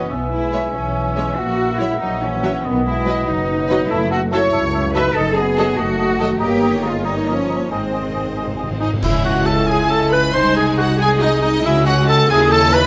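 Stormy and urgent, this fast romantic orchestral passage in 6/8 pushes forward with rubato, cut from a longer movement. The violins carry the melody with smooth vibrato, while a second violin line and expressive violas fill in lush harmony behind them, and cellos and a focused, clear double bass section anchor the low end. A mellow, punchy cor anglais and an airy, hollow flute trace secondary lines, the flute dropping out at 8.9 s, as a French horn section holds mellow sustained chords and a ringing harp ripples arpeggios underneath. Tension builds as dark cymbals and bass drum arrive at 6.4 s, followed by a dry timpani fill that leads into a full-band accent at 9.0 s, where the harmony lands on C# minor. From there a tight, close-miked trumpet section adds clear stabs through to the end, all set in a moderate scoring-stage reverb.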